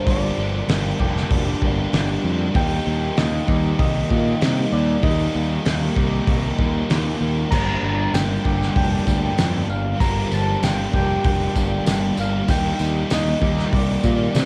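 A round, warbling FM synth lead carries the melody from the start, beside a bright, twangy clean guitar playing arpeggios in lush chorus and analog delay, while three overdriven guitars stack riffs beneath: one double-tracked in the background and a hollow-body part kept very quiet. This hazy, dreamy shoegaze and dream pop excerpt moves at 97 BPM in G minor, cycling through Gm7 and Eb chords, with a growling, overdriven fingered bass and an up-front indie drum kit, its fat snare, punchy kick and dark cymbals filling a pumping room. A jingly tambourine slips in at 7.5 seconds, and cassette tape coloring on most parts plus small-room ambience give this home recording its worn, intimate character.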